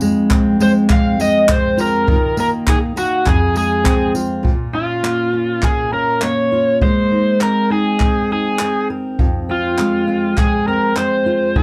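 A lightly swung 4/4 groove at 101 BPM carries this reflective, wistful acoustic pop fragment, where a jazz brush kit with a boomy kick, handclaps and tambourine sits up front beside a full-bodied jumbo steel-string guitar fingerpicked on fresh strings, while from 0.6 s a bright, overdriven slide guitar played with fingerpicks sings the melody over chords centred on F minor that shift at 4.5 s through Bbm and Abadd9, all set in a small, reverberant room heard from further back.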